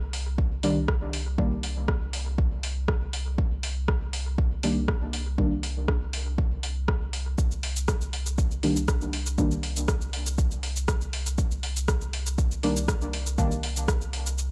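A smooth, dark sine sub bass with sidechain pumping opens this deep, cavernous dub techno fragment, soon joined by a soft vintage rhythm box of metallic hi-hats, rim click and shaker, an overdriven, up-front electronic kick from 0.4 seconds, and, from 0.6 seconds, a mellow, wave-folded Cm7 chord stab that recurs through the passage, colored by chorus, phaser, dub echo and sidechain pumping, captured in a dry, gritty hardware recording.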